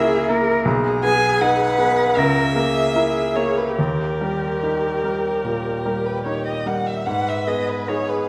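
A wet, hall-like reverb with a 1.8-second tail surrounds this short slice of a slow, romantic piano trio movement in G# minor, moving with rubato at around 70-82 BPM. Up front, a warm violin carries the yearning, melancholic melody with vibrato and portamento, its tone expressive yet distant, while a rich, smooth cello sings an even second line beneath it. A clear, intimate baby grand supplies the accompaniment with long sustain and audible action noise, its harmony passing through diminished colour and D# before settling on G# minor at 7.1 seconds.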